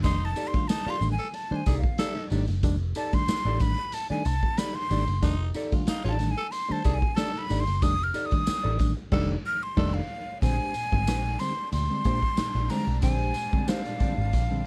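A breathy, up-front jazz flute leads a strutting, energetic funk groove at 92 BPM in F mixolydian, backed by a growling tenor saxophone line until 9.9 seconds, lightly overdriven reedy electric piano stabs, round foam-muted picked bass, a gritty saturated garage drum kit, a jingly tambourine, and a clean, fingered electric guitar with subtle chorus, with a band accent from 9.1 seconds before soft-attack sul tasto strings enter in the background at 10.4 seconds as the harmony moves from F13 to Bb13 in this dark, dry production.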